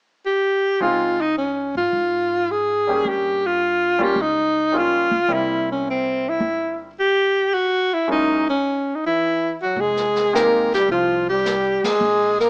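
A clear, close-miked alto saxophone opens this smoky, moody excerpt of small-group swing in F minor at 107 BPM, its soft-attacked melody carrying vibrato up front, while an intimate grand piano with audible action noise and a woody pizzicato upright bass join underneath over Dbmaj9, Gm7b5, C7 and Gb9. A punchy, forceful trombone with scooped notes adds a second line from 9.1 s, and a distant, roomy brush kit with dark cymbals and a rolled-off top enters at 9.8 s as the harmony settles on Fm7, with a band accent at 11.7 s. Light reverb and a small-speaker sound frame the performance.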